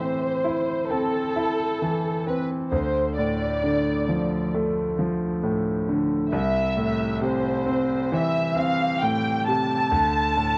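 Longing and heartbroken, this pop ballad in A minor moves at 67 BPM in a straight 4/4, cut from a longer piece and running just over 10 seconds. A dark, woody violin section carries the melody between A4 and A5 with vibrato and a lush bowed ensemble sound, while a clear, vintage concert grand piano with deep bass accompanies from C2 up to E4, both up front and tinted by cassette tape. The chords pass from Am to Dm at 2.7 seconds and Am/C at 6.3 seconds before landing on D5, all inside a moderate studio reverb on this home cassette recording.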